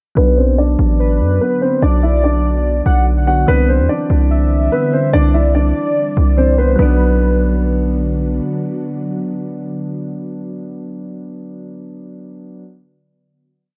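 A brooding, melancholic trap piece in B phrygian at 145 BPM with a half-time feel opens with a dark, vintage-toned grand piano looping an octave-doubled melody over soft, round electric-piano-like keys holding close chords and a heavy, aggressive distorted 808 sliding between long sub-bass notes, all under a filter sweep through the breakdown. An ethereal, detuned pad drifts in at 1.4 s in the background with ensemble chorus and reverb, while a velvety, warbling synth lead with vibrato and tape echo adds a sparse counter-melody. The piano, bass and lead drop away near 8 s, leaving the keys and pad to ring out the final Bm chord in a dark, warm digital ambience.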